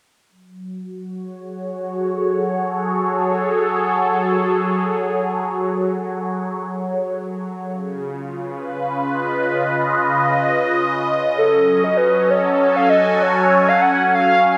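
A moderate echo-chamber reverb with a digital ambience surrounds this melancholic, intricate IDM passage, cut from a longer piece, at 130 BPM in 4/4 with a 56% swing on the sixteenths, in F# melodic minor. A swirling, detuned sawtooth pad with a slow attack and long release carries sustained chords up front from 0.3 seconds, its phaser and chorus keeping it constantly evolving. A filter sweep shapes the pad through the opening stretch before the harmony moves from F#madd9 to C#7 and back to F#madd9. At 11.4 seconds a warbling, nostalgic lead enters with a melody in a full-bodied blend of triangle and sawtooth, its fast attack, vibrato, tremolo and chorus giving it a wavering presence up front alongside the pad. Both parts continue to the cut at 14.6 seconds.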